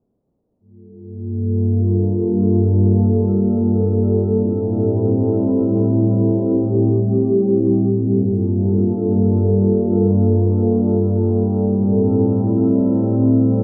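Floating in free time, this melancholic, ethereal hip hop excerpt features a lone warbly tape-like pad, detuned and mellow with a lo-fi, nostalgic haze from chorus and its own reverb, that enters at 1.1 s and sustains through 13.6 s over slowly alternating Gm7 and Am7 chords, all bathed in a huge ambient reverb and a low-pass filter sweep.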